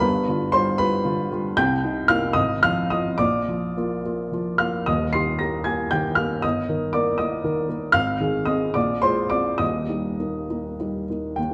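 Lyrical and warm, this short passage from a romantic character piece for solo piano moves in a rubato 6/8 at about 67-80 BPM in dotted quarters, its Eb major harmony drifting from G7 through Cm7 and Bb9 before settling home on Eb at 9.6 seconds, played on an intimate, woody upright with audible action noise, placed up front in a moderate recital-hall reverb and given a dark, warm production.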